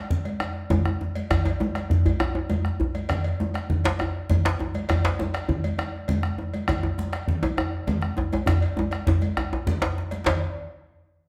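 West African traditional drumming fills this short cut from a longer piece, a driving, earthy ensemble moving at 134 BPM in a straight 12/8. The bombo sits up front with a round, close and dry tone, while the congas come through bright and medium-tuned with a thin-skinned edge in a live room sound. Two djembes join within the first second, both medium-tuned and played with soft hands, one placed up front and the other held in the background. A metallic cowbell rings through the live room from 0.3 seconds onward. The whole band plays live together in one room, bathed in a wet large studio reverb, and a drum fill from 8.5 to 10.3 seconds leads into a brief closing section.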